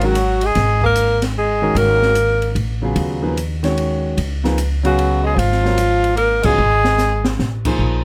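A breathy alto saxophone carries the melody up front over a breathy tenor saxophone's scooped, softly attacked second line, both with light vibrato, in a spiritual, hypnotic modal jazz excerpt in G# dorian at 149 BPM in a swung 3/4, resting on a G#13sus4 chord. A clear, intimate concert grand piano with audible action noise and deep bass accompanies throughout, anchored by a woody, thumpy pizzicato upright bass, while an acoustic drum kit with dark cymbals, a high-tuned snare and a boomy kick sits back in the mix. The saxophones drop out briefly around 2.6 seconds and return, a band accent lands at 6.4 seconds, and a drum fill follows, all captured with close, detailed microphones and little reverb.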